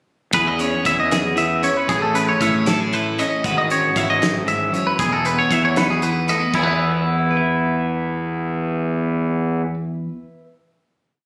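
A twangy, up-front electric guitar repeats a clean, picked ostinato steeped in spring reverb and slapback echo over a bright twelve-string electric guitar's rolling fingerstyle arpeggios, a round, fuzz-overdriven fingered bass and a loose indie drum kit with a fat snare and dark cymbals, in a wistful 6/8 math rock and midwest emo piece at 77 BPM in E major, moving from E6 through Amaj7, E69/G# and Emaj7 before a final E chord rings out from 6.5 s and the drums stop at 6.7 s, all captured on a phone in the room.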